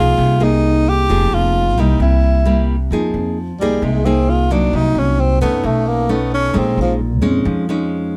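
A straight 4/4 bossa nova groove at 132 BPM in F minor carries this wistful, smooth fragment of a longer piece, with a woody, thumpy pizzicato upright bass and a fingerpicked classical nylon-string guitar sitting up front in a dry mix. A breathy, mellow tenor saxophone sings the melody in jazz style with vibrato, soft attacks and scooped notes, moving into a solo at 2.9 s as the harmony turns from Fm11 and C7 toward Fm7, Cm7b5, B9 and Bbm7. The saxophone drops out at 6.9 s, and guitar and bass carry on to the cut at 8.2 s.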